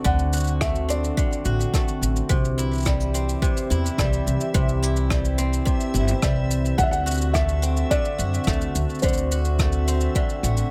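A woody, thumpy pizzicato upright bass sits up front in this delicate, playful folktronica excerpt, joined by a deep electronic kick, brushed shaker and rim click, and a bright, boxy picked acoustic guitar with finger squeak weaving swing-style arpeggios through digital delay. A warbling, nostalgic tape-like pad holds lo-fi chords moving from D7 to C and back, while a soft, muted felt piano plays an intimate melody until 2.0 s and returns at 6.8 s. A reversed, dreamy granular texture enters at 3.5 s, swelling faintly in the background of an otherwise dry mix.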